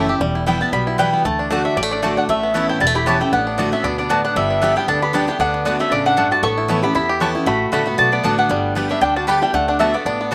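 Bluegrass in D major at a racing 232 BPM with a light swing, this virtuosic, joyful excerpt puts a round, double-strung mandolin melody high over a twangy fingerpicked banjo line, while a second woody mandolin adds slapback-echoed stabs, a bright, full-bodied dreadnought guitar picks the accompaniment, a thumpy gut-string upright bass anchors the bottom, and a metallic, nasal slide resonator guitar with slapback echo joins in the background at 1.9 seconds, all in a dry outdoor sound as the chords cycle through Aadd9, D6/A and G.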